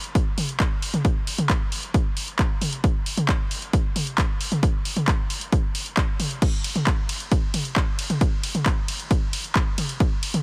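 A straight, steady pulse drives this short trance excerpt, built entirely from drums. An analog drum machine runs the whole way through, laying down crash and ride cymbals, hi-hat, handclaps and toms with a punchy, up-front character. An electronic kick drum joins at 0.2 s and carries the beat with a tape-warm analog thump that sits slightly above the rest of the kit. The mood leans euphoric and emotional. A digital ambience surrounds the drums, and the overall sound is heavily compressed, with a squeezed, radio-like quality.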